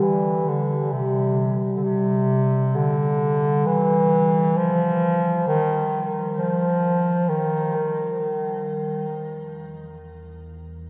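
A soft-attack bass clarinet sits up front with a smooth, classical-style solo melody through shimmer reverb and tape echo until 8.7 s, over a resonant, evolving analog drone of sawtooth and pulse-wave tones with chorus that sustains on alone to 10.9 s, giving this desolate, unsettling dark ambient fragment in free time, tuned to A4 = 437 Hz, a cavernous cathedral reverb and the worn, warbling pitch drift of old cassette tape.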